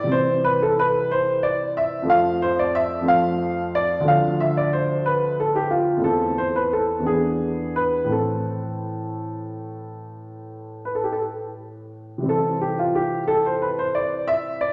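A warm, open baby grand piano plays alone and up front with long sustain in this flowing, radiant excerpt of a baroque-style suite movement in A minor, moving in a rubato 12/8 at 59 dotted-quarter beats per minute through C, F, Dm, Am/E and E7 to settle on Am before its opening phrase returns on C at 12.3 seconds, all bathed in a wet recital hall reverb.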